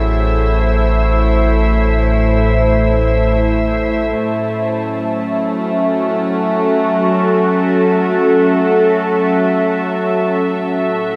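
Bathed in a huge, wet reverb with a dark production, this melancholic, serene ambient excerpt drifts through a morphing, warbling wavetable pad that sits up front with vintage chorus and sustained chords. A deep, round sub bass and a very quiet, reedy, breathing harmonium drone fill out the low end before the bass stops at 4.1 seconds and the harmonium at 4.3 seconds. A veiled, con sordino studio violin section adds a muted bowed texture with light vibrato and fades out from 4.2 seconds as the harmony shifts from Am to F#m7.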